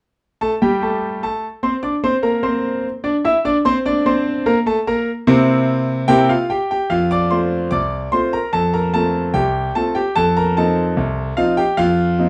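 A straight, steady two-beat pulse at 74 BPM carries this jaunty, lively ragtime passage in F major, taken from a longer piece. A bright concert grand piano plays solo from 0.4 seconds, spanning a range from C2 up to E6, its brilliant upper register set against a deep bass. The tone is smooth with a vintage character, and the piano sits up front, though a wet studio reverb places the whole performance a little further back in the room. The harmony opens on C7sus2/G and settles onto C7, then a new section at 6.9 seconds arrives on F before turning to F7 at 10.1 seconds, carrying through to the close at 12.3 seconds.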